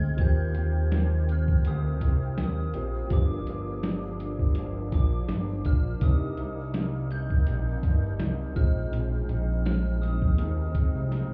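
A sparkling, bell-like glockenspiel melody with chorus and tape echo opens this hazy, sunny slice of bedroom-leaning indie pop at 82 BPM in Eb major, over a slightly broken-up electric guitar through a small old amp, a reedy electric piano with fast tremolo in the background, a fat, detuned analog bass up front and a very quiet, grainy tube shaker, with a muffled, thumpy lo-fi sampler-style drum kit joining at 0.2 seconds and ending on a fill at 11.1 seconds as the chords move from Eb6 through Gm7 and Cm7 to Bb9sus4, the mix sounding as if heard through a wall.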